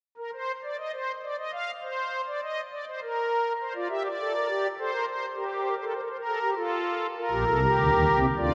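A soft, shimmering pipe organ sounds up front within a wet church reverb that lingers for 3.2 seconds, giving this short excerpt a spacious, resonant glow. The piece is a classical, baroque-style three-part fugue in Bb major, moving at 101 BPM in a straight 3/4 with an elegant, joyful mood. The organ plays alone on string and celeste stops in a romantic voicing, entering at 0.2 seconds and continuing to 8.5 seconds across a range from Bb1 up to F5. The opening is unaccompanied by any chord, and harmony arrives around 4.8 seconds, passing through Am, C5/G and F before settling on Bb. Cut from a longer work, the passage leaves the fugue's graceful lines suspended in the church's lingering ambience.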